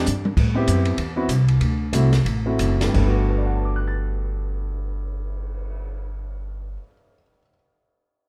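Small-group swing and bop jazz in G major, this brief cut from a longer piece moves at 169-198 BPM in 4/4 with a swung eighth-note feel and a sophisticated, warm mood. Just after piano and bass enter, an open jazz drum kit plays a fill at 0.1 seconds, its dark cymbals, medium-tuned snare and boomy kick sounding smooth and rolled-off in a small room, with crash, ride, hi-hat, toms and a cymbal swell all in the mix. The woody pizzicato upright bass on steel strings sits up front, moving between F#1 and A2. The grand piano accompanies from G2 to A6 with a short sustain, also placed close, as the harmony passes through Am9 and D7 while the tempo slows through the first section before resolving to Gmaj9 at 2.9 seconds. Light reverb surrounds the trio, and the drums drop out at 5.7 seconds, leaving bass and piano to ring until the bass stops at 6.8 seconds and the piano finishes at 7.5 seconds.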